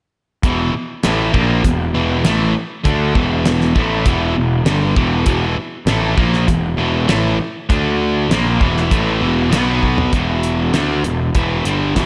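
Swaggering and sunny, this 99 BPM classic rock excerpt from a longer piece sets a distorted, double-tracked, scooped electric guitar riff with slapback echo up front over a growly, fuzz-toned picked electric bass and a damped 70s drum kit with a fat snare and tight kick, all playing from 0.4 seconds, moving through E5, D5 and B5 power chords, with a drum fill at 9.8 seconds leading into a new section at 10.1 seconds, all inside a lush hall reverb that gives a big arena sound.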